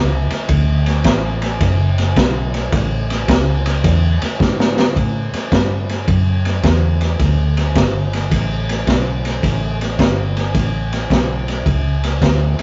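A rough rehearsal-room recording with tube saturation, a moderate studio reverb and a rolled-off, dull top end gives this rollicking, soulful electric blues shuffle its dusky character. A vintage muted electric bass, fingered and foam-muted, opens the excerpt with a round, punchy, amped tone. At 0.3 s a crunchy breakbeat drum kit joins, placed up front, with a tight kick, a high-tuned snare and dark ride cymbal, its sound gritty and smooth at once. The swung groove rolls along in 4/4 until a drum fill at 4.4 s ushers in a new section at 5.0 s. Both parts carry on together to the cut, the kit's saturated warmth pairing with the bass's dark, electric thump.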